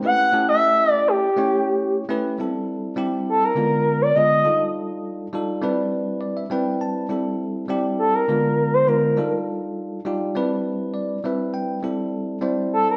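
Funky and soaring, this jazz excerpt moves at 102 BPM in 4/4 with a light sixteenth-note swing, built on rich extended chords such as A9, D9sus4 and Ebmaj9#11. A bell-like, bright tine electric piano carries the accompaniment and adds fills at 5.9 and 10.7 seconds, while an expressive portamento lead with a smooth, sawtooth-and-triangle tone, soft attack, vibrato and chorus sings the sustained melody up front. The two parts sound like a band playing live in one room, wrapped in a wet stone-room reverb.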